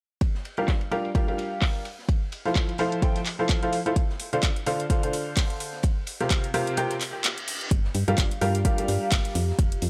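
Piano house with an energetic, bittersweet mood, cut from a longer piece, where a punchy, up-front electronic kick and a house kit of handclaps and metallic, filtered hi-hats ride over a dark, smooth jazz kit of ride, hi-hat and snare in the background, while a clear, woody, slightly detuned upright piano riff pumps against the kick through tape echo; the kick drops out at 6.8 seconds as a reverse cymbal enters at 7.1, then at 7.7 a round, dark FM bass arrives, and at 8.4 a warbling, nostalgic lo-fi pad with chorus and phaser drifts in behind, all within a dry, gritty hardware sound with transformer saturation.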